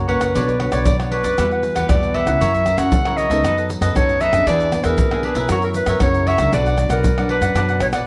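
Worn, warbling cassette tape with a drifting pitch colors this festive, sunny samba and choro fragment, set in a moderate large-studio reverb. At 117 BPM in B harmonic minor, a warm, distant clarinet sings the classical-style solo melody over crisp picked cavaquinho, dark fingerpicked nylon-string guitar and woody, thumpy pizzicato upright bass on gut strings, while a deep surdo, pandeiro, tube shaker and tamborim sit up front. A drum fill arrives at 7.8 seconds, where an airy metal jazz flute adds a brief, expressive vibrato note.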